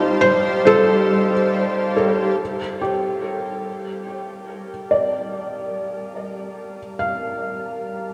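Ambient music in G minor at 72 BPM, melancholic and spacious, tuned slightly below standard pitch, with a dark production set in a wet concert hall. A shimmering, ethereal pad holds sustained chords throughout, its detuned, granular sound lifted by an octave-up shimmer and chorus, and it fades in from 2.4 seconds as the harmony moves from F over G to Gm7. A felt-muted upright piano plays soft arpeggios across the whole passage, intimate and close, with audible action noise and a diffuse ambient delay trailing into the shimmer reverb. A second piano part states a brief, short-sustained melody between 0.2 and 1.9 seconds, sitting a little louder than the rest. Alongside, a very quiet glassy texture of drifting overtones hovers only through the opening seconds before the chord change. The passage is cut from a longer piece.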